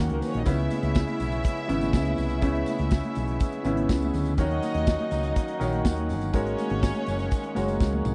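Glamorous and driving, this short disco excerpt moves at 123 BPM in a straight 4/4, set in C# dorian with chords shifting from C#m7 to D#m7 and then a G#9sus4 at 6.3 seconds. An up-front modern drum kit with a tight kick, medium-tuned snare, hi-hat and toms sounds airy and polished, and it closes with a drum fill at 7.8 seconds. A dark, round, punchy hollow-body electric bass sits up front in the low register, while a concert grand piano with audible action noise and deep bass supplies intimate accompaniment. A full, thick tonewheel organ holds sustained chords with light overdrive, key click and lush chorus, and a smooth, even string section plays a bowed second line with vibrato. High-tuned, hard-handed congas and a jingly tambourine stay in the background, and the whole has the dry, close feel of a 1970s-style studio in a small room.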